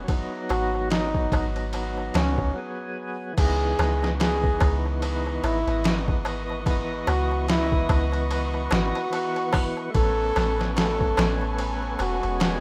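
A swung, slow 73 BPM trip hop groove in 4/4 sets a dark, melancholic mood in C# minor, built on a compressed, pitched-down sampler-style drum kit with a thumpy kick and overdriven grit, a round, deep 808-style bass up front, and a crisp metal-shell darbuka sitting dry in the background. A thick tonewheel organ with key click, slow rotary speaker, tremolo and tape echo holds the chords from G#m7 through C#m9 to Amaj9, while a bucket-muted trumpet carries a forceful, jazz-inflected melody with vibrato from 0.5 seconds, its tone veiled and mellow under tape echo. After a short break ending at 3.4 seconds, a con sordino studio string section enters softly behind everything with smooth, bowed sustained chords, all within a rough, nearly reverb-free home demo mix of a fragment from a longer piece.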